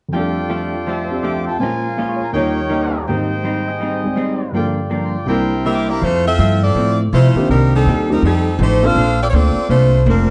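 Big band swing in F major at 163 BPM, this brassy, swinging excerpt opens with a clear, tight trumpet section firing vibrato-laced stabs over a polished concert grand piano and a dark, clean hollow-body electric guitar comping through chords like F69, Bbm7 and Eb7. Around 5.7 seconds an edgy, close-miked saxophone section takes the melody up front, and at 6.0 seconds the trumpets drop out as a woody, thumpy pizzicato upright bass on gut strings enters beneath, while the piano stops at 9.0 seconds. The production is dark, with light reverb.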